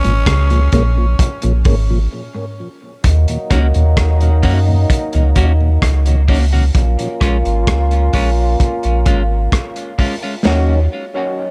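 A slow, straight 4/4 groove at 65 BPM drives this spacious, meditative dub reggae excerpt in Eb minor. A crunchy breakbeat kit of kick, snare, rim click and hi-hat sits up front with a gritty, saturated, rolled-off sound, alongside a deep, round sine sub bass. A mellow tonewheel organ with key click and slow rotary speaker holds the Bbm7 and Ebm7 chords throughout. At the opening, a raspy, growling tenor saxophone phrase and a dark, picked clean electric guitar riff appear briefly, both soaked in tape echo. From 3.0 seconds a cup-muted trombone section adds a soft, veiled second line with light vibrato, soon joined by a semi-hollow electric guitar playing hollow-body accompaniment. A very quiet, reedy electric piano with fast tremolo drops in stabs at 10.4 seconds, while light reverb and small-room ambience keep the echo-heavy mix airy.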